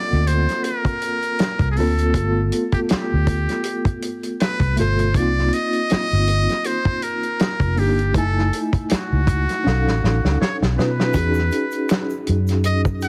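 A buzzy, metal-muted trumpet with tape echo carries a breathy jazz-style melody over a worn, slightly out-of-tune tine electric piano with medium tremolo, opening this sultry, soulful neo-soul and R&B excerpt at 80 BPM with a light sixteenth-note swing. A dark, foam-muted fingered bass sits up front beside a tight, punchy soul drum kit with a rolled-off top; the drums take a fill at 9.6 seconds, and a faint egg shaker and finger snaps slip in at 11.1 seconds. The harmony moves through a mix of ninth and seventh chords to a closing Emaj9, all heard in a dry, heavily compressed radio sound.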